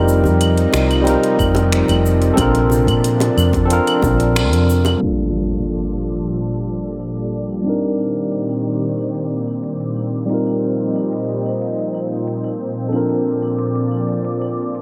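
Sunset chillout at 91 BPM, relaxed and wistful, in which an up-front tine electric piano with delay and a thick, detuned pad with chorus and phaser carry jazzy ninth chords from F9sus4 through Bbmaj9, Gm9 and Cm9, while a growly, round fretless bass, tight high-tuned bongos and an overdriven electronic kick in the background drop out by 5.0 s, where an electronic impact lands and a filter sweep begins, leaving the deep house kit's metallic hats, claves, finger snaps and shaker in a dreamy, reverb-soaked mix.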